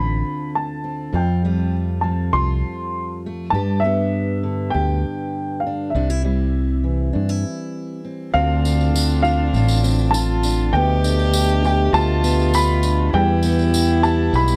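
A round, up-front fingered electric bass anchors this haunting, wistful acoustic folk excerpt at 100 BPM in D dorian, as a dark, woody upright piano carries the melody over a fingerpicked steel-string acoustic guitar with fresh strings and audible finger squeak, before an intimate, bowed sul tasto cello with light vibrato and a reedy, breathing pedal harmonium in the background join at 8.3 seconds and a jingly tambourine follows at 8.7 seconds, captured in a dry, close 1970s-style studio sound.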